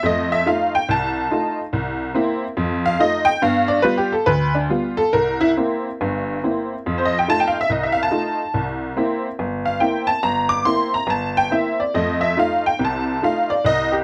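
Playful and warm, this short excerpt from a longer solo jazz piece features a honky-tonk upright piano on its own from 0.0 to 14.0 seconds. The metre is 4/4 with a swung eighth-note feel, yet the pulse bends freely with rubato phrasing. Sitting up front, the instrument sounds detuned and jangly, with a vintage, bright character that still comes across smooth, and its range stretches from deep bass notes up into the high treble. Harmony moves through dominant seventh chords on F, C and G, with a second pass over the opening material beginning at 5.1 seconds. Close, detailed microphones catch the piano in a light reverb, giving the performance an intimate presence.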